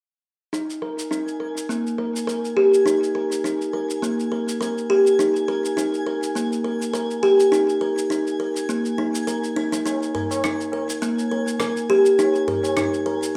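A bright, woody kalimba opens this hypnotic organic downtempo excerpt at 0.5 s, playing up-front arpeggios over an Ebsus4 chord in Eb major at 103 BPM with a light swing on the 16ths, its tone coloured by vintage 12-bit sampler grit, a low-pass filter and delay. From that same moment, a compressed, gritty electronic cabasa and rim click sit quietly beneath it in a small room, while a twinkling granular texture with an octave-up shimmer and slow attack drifts in from 1.1 s on a sustained high note. At 9.9 s a low-tuned, ringing tabla joins from a distant large room, and the rough home demo mix is bathed in wet studio reverb.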